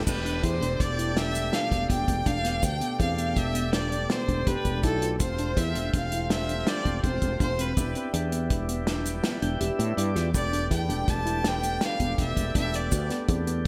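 Bright, 1980s-style digital production with light reverb frames this intricate, tense progressive instrumental in 7/4, cut from a longer piece. A clear, bowed violin with smooth vibrato carries the melody over a tonewheel organ turning through a slow rotary speaker with audible key click, a mellow tine electric piano playing arpeggios in the background, a growly, woody fretless electric bass up front, a soul drum kit with gated reverb and dark cymbals, and a grainy tube shaker. The organ adds a brief fill at 9.2 seconds, while the harmony moves from Gadd9/E to Fadd9/E and then to Em7.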